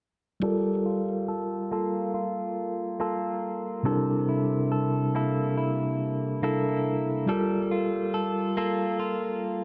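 A dark, warm production with light reverb gives this short excerpt of a longer piece a moody, late-night air. It is slow R&B at 70 BPM in 4/4, with a slight swing on the sixteenths, set in G dorian and tuned to A4 = 438 Hz. A mellow tine electric piano sits up front with a clean tone heard through its built-in speakers, carrying the accompaniment through a low-pass filter. Beside it, a direct-recorded clean electric guitar picks compressed arpeggios, also up front and filtered, with tape echo trailing its notes. Both parts play from 0.4 to 9.6 seconds while a filter sweep runs across the whole passage. The harmony moves from Gm9 to C13 at 3.9 seconds and returns to Gm9 at 7.3 seconds.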